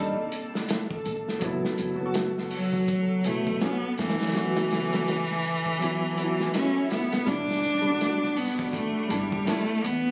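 Trip hop at 82 BPM in 4/4 with a 16th-note swing, this brooding, smoky excerpt sits in E minor, tuned slightly sharp, and is cut from a longer piece. A felt-muted upright piano plays soft, intimate accompaniment with tremolo, tape echo and audible action noise, over a woody pizzicato upright bass kept in the background. Behind them, a reversed, detuned, granular texture glows dreamily until 7.3 seconds. A crunchy breakbeat kit of hi-hat, tight kick and medium-tuned snare sits up front, saturated and gritty with a rolled-off top. From 2.5 seconds a single bowed cello carries the melody, close and smooth with vibrato, roughened by 12-bit sampler grit and tape echo. The chords move from D#5 to F#7sus4 and settle on Em7 at 7.3 seconds, where a very quiet electronic swell gives way to an impact, all heard through a small-room, phone-recorded sound with club reverb and compression.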